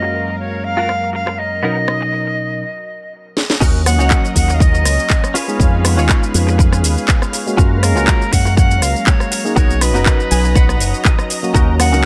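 Nu-disco with a cosmic, groovy mood, cut from a longer piece, where a reedy flute melody with delay floats over tine electric piano, a lush warbling unison pad and a twangy clean guitar riff with dub echo, while a house kit with cracking snare and metallic hats filter-sweeps in before a break and fill, and at 3.6 seconds the drop brings in a punchy electronic kick and envelope-filtered fingered bass, with a guitar fill from 10.1 seconds, all in digital ambience.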